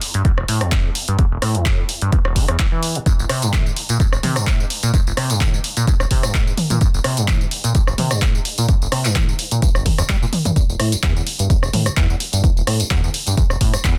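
A squelchy, resonant sawtooth acid bass riff sits up front, its filter sweep, tube saturation, subtle chorus, digital delay and sidechain pumping giving this driving, hypnotic acid house excerpt its bright, liquid pull, while a tape-warm electronic kick and a punchy analog drum machine of handclaps, hi-hat, rim click, tambourine and toms swing lightly on the sixteenths under light reverb in a dense, heavily limited modern master.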